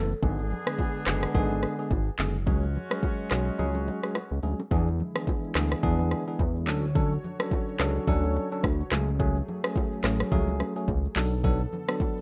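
A bell-like tine electric piano and a fat, detuned analog bass open this sultry, hypnotic afrobeats excerpt at 107 BPM with a swung sixteenth feel, joined by an up-front electronic drum kit with deep kick, metallic hats, handclaps, rim click and shaker, very quiet close congas and bongos, and a vintage horn section with light vibrato that plays until 4.4 s, before a break from 3.6 s gives way at 4.7 s to a smooth, chorused analog pad in the background beneath chords moving from E7 to Bm7, all in a rough, dry home-demo mix.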